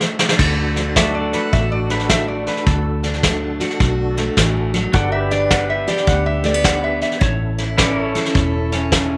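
A swung 4/4 shuffle at 106 BPM opens with a brief brush fill from the vintage drum kit, which sits up front with a punchy kick, dark cymbals and a rolled-off top. This nostalgic, easygoing honky-tonk and classic country passage, cut from a longer piece, is in D major and moves from D to G to A. A bright, full-bodied dreadnought acoustic guitar is picked with audible finger squeak. At 0.4 seconds a round, foam-muted electric bass joins, along with a mellow tonewheel organ with third-harmonic percussion and slow rotary chorus vibrato, tucked in the background. From 1.0 seconds a metallic, nasal lap resonator guitar played with a slide and fingerpicks carries the solo line over clean, twangy, compressed pedal steel chords. A moderate spring reverb gives the band a relaxed, vintage glow.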